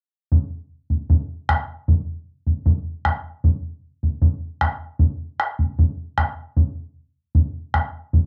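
Andean folk in a straight 4/4 at 77 BPM, this short excerpt from a longer piece features a lone bombo sounding from 0.3 to 8.3 seconds. The drum is round and up front, with a vintage, band-limited character that lends an earthy, wistful mood. A wet small-room ambience and the intimacy of a cassette home recording frame the sound.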